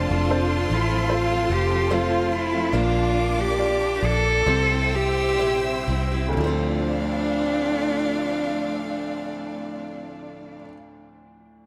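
Melancholic and heartbroken, this slow pop ballad in D minor, cut from a longer piece, moves at 60-77 BPM and slows over its first 6.4 seconds: a warm, focused solo cello with vibrato carries the melody up front, a bright, distant chamber cello section sings a second line in the background, a lush studio string section with portamento holds sustained chords, a full-bodied picked steel-string acoustic guitar plays arpeggios through subtle chorus and diffuse ambient delay, a soft felt-muted upright piano with audible action noise accompanies from behind, and a dark, round, foam-muted electric bass sits up front, the dreamy mix soaked in hall reverb as the chords move from F through Bb and C to Dm7.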